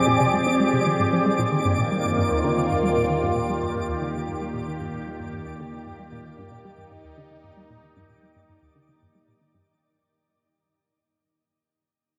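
Drenched in a huge ambient reverb with a cassette-tape haze, this hypnotic, expansive fragment of sequencer-driven space music at 114 BPM moves from F minor to E-flat as a swirling, airy phased analog pad sits up front alongside a twinkling granular texture with octave-up shimmer, while a juicy, squelchy resonant blip pluck carries the riff through chorus and tape echo under a filter sweep, a dark analog drone hums in the background, and the whole passage fades out across its 9.7 seconds.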